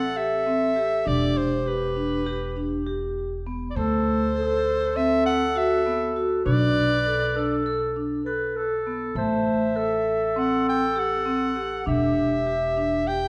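Hypnotic and pensive, this contemporary chamber excerpt moves in an uneven 9/8 at 200 eighth-note beats per minute in A dorian, cut from a longer piece and set in a wet recital hall reverb. An up-front soprano saxophone with light vibrato carries the classical-style melody over a mellow, distant clarinet second line, while a woody, thumpy pizzicato upright bass on gut strings anchors the low end. From 0.2 seconds a metallic, ringing vibraphone played with medium hard mallets and motor off spins arpeggios with a boxy small-room colour, through chords moving from Am7 to Em7, D9 and Bm7 before returning to Am7 and Em7.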